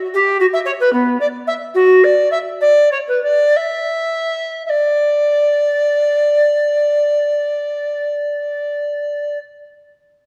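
A moderate concert-hall reverb with a 1.8-second decay surrounds a lone bass recorder, giving this brief excerpt from a longer piece a radiant, serene glow. This classical, baroque-style fantasia is in 6/8 with a free, rubato feel, and the pace slows through the opening phrase up to 4.7 seconds, where a second section begins. The recorder's tone is airy and woody, with a chiff on its tongued notes and vibrato. Its expressive line ranges from B3 to E5 and sits up front in the sound. The solo voice plays from 0.1 to 9.4 seconds.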